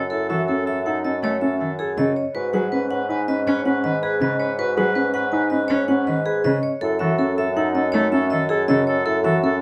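Vibraphone struck with medium hard mallets rings out a metallic, close-miked melody with motor vibrato over a clear, distant oboe second line and a mellow, roomy bassoon bass, soon joined by dark baby grand piano arpeggios and a rich, expressive bowed cello accompaniment with portamento, in this urgent yet meditative minimalist classical pattern piece in F# dorian at 161 BPM in 6/4, cut from a longer work, moving from F#m7 to G#m7 and back to F#m7 at 6.8 seconds under light reverb.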